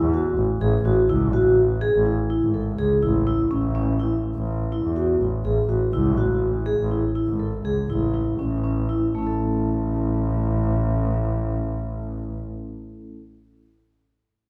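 This is contemporary instrumental chamber music in an uneven 5/4 meter, cut from a longer piece and set in A major at about 123 BPM, with a playful, shimmering mood. A vibraphone played with medium mallets carries flowing arpeggios in the middle register, its metallic, airy tone given a slow motor vibrato. Beneath it, a single bowed double bass holds the low end with a rich, smooth and even sound touched by vibrato. The music rests on an Amaj7 harmony and slows down from 5.2 s until 9.1 s, where a new passage settles onto a plain A chord. The bass drops out at 12.4 s, leaving the ringing vibraphone to finish alone, all heard from further back in a generously reverberant scoring stage.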